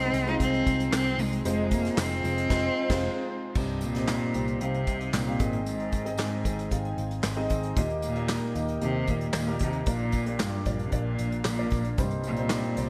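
A straight 4/4 groove from an up-front acoustic drum kit, played with bundle sticks and carrying dark cymbals and handclaps, drives this earnest, bittersweet piano-driven pop excerpt, where a rich bowed cello sings the melody with vibrato and portamento over a clear, intimate grand piano bathed in lush chorus, a round, foam-muted vintage electric bass, a very quiet airy pad and a jingly tambourine in the background, as the band hits an accent at 2.5 seconds before a new section opens at 3.6 seconds, in a bright 1980s-style digital production with hall reverb.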